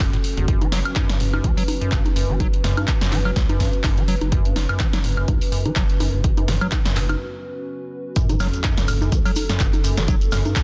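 Raw and hypnotic, this acid house piece, cut from a longer track, runs at 125 BPM in 4/4 with a 16th-note swing in F# phrygian. A squelchy, resonant square-wave acid bass drives the riff through overdrive and a filter sweep, with a thick, saturated sine sub bass sitting deep in the background. Both pump with sidechain compression, as does a dark, detuned analog pad holding sustained chords through chorus. A punchy electronic kick and an analog drum machine re-recorded in a small room supply congas, handclaps, hi-hat, snare, toms and woodblock, with a short room on the snare, clap and hats. After a break at 7.2 seconds, the drop lands at 8.2 seconds, where the harmony moves from F#5 to F#m, a very quiet sub drop marks the impact, and a grainy, close shekere joins in the background. The sound carries light reverb and a dense, heavily limited modern master.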